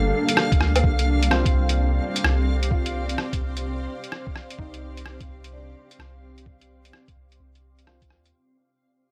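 A deep, round 808-style bass sits up front in this rainy, ghostly future garage excerpt, its sine tone striking quickly and decaying darkly beneath a sidechain pump. A pitched-down, compressed sampler-style kit of hi-hat, rim click and woodblock enters at 0.3 seconds, and a muffled, thumpy electronic kick joins at 0.5 seconds, both in a small room and moving with a swung sixteenth-note feel. A cloudy, blurred granular pad holds detuned sustained chords that move from Gm7 to Cm, evolving as it pumps with the sidechain, while a reversed, dreamy triangle texture hangs high on a single note. Far back, a woody upright piano plays short accompaniment through a low-pass filter and tape echo. Vinyl crackle and a dry, gritty hardware character colour the whole recording, which fades out from the very start.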